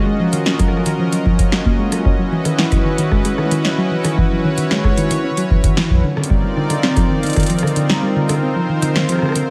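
This IDM excerpt, cut from a longer piece, has a melancholic, intricate mood in a straight 4/4 feel. A smooth, mellow analog pad built from sawtooth and triangle waves with a sub octave holds sustained chords through a slow attack and long release, sitting up front with chorus. Beneath it, a soft, round pluck of triangle, sine and sawtooth with a noise layer plays dark, decaying arpeggios, thickened by chorus and tape echo. An electro analog drum machine supplies metallic hi-hats, a rim click and a punchy snare with tape echo, while a deep, tape-toned electronic kick sits up front from 0.6 s to 7.5 s. The harmony moves from Ebm11 to Dbm11 and then to Cm11, and a plate reverb soaks the mix in a dreamy digital ambience, with lossy compression artefacts.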